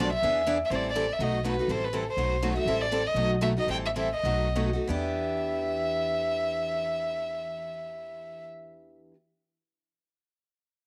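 Acoustic string swing in E minor at 172-247 BPM, swinging and bittersweet, with a warm, bowed violin carrying the melody with light vibrato and an airy sul tasto tone, a bright, boxy picked steel-string guitar comping through dominant and minor seventh changes, and a woody, thumpy pizzicato upright bass underneath, all in a small room ambience, the music slowing down from 2.7 to 4.9 seconds before settling on Em7.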